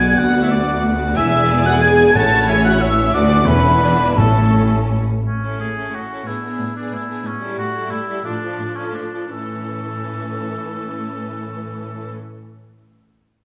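A hollow, airy concert flute rides high over this stormy, urgent classical passage in A major at 179 BPM in a rubato 3/4, alongside a mellow clarinet, a warm distant oboe and a clear, intense violin line, while a second violin section carries the melody in the background. Rich violas and focused cellos supply lush vibrato accompaniment and bass, smooth double basses fill out the low end, and dark, soft-edged French horns hold sustained chords. Round soft-mallet timpani sound briefly before the flute drops out at 4.9 seconds, and the music slows from 6.8 to 9.3 seconds, all in a reverberant recital hall.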